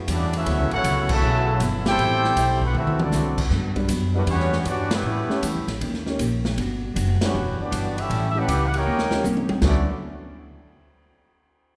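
A smooth-topped trumpet section carries the melody up front in this energetic, brassy big band swing passage, backed by a mellow trombone section playing a second line with light vibrato. A woody, thumpy pizzicato upright bass on gut strings and a swinging drum kit with a boomy kick drive the groove, with band accents and drum fills, while a dark, clean hollow-body electric guitar comps in the background. A distant, very quiet trombone section holds sustained chords until 3.5 seconds, a natural-sounding baby grand piano enters at 3.8 seconds, and a wet hall reverb bathes the ensemble.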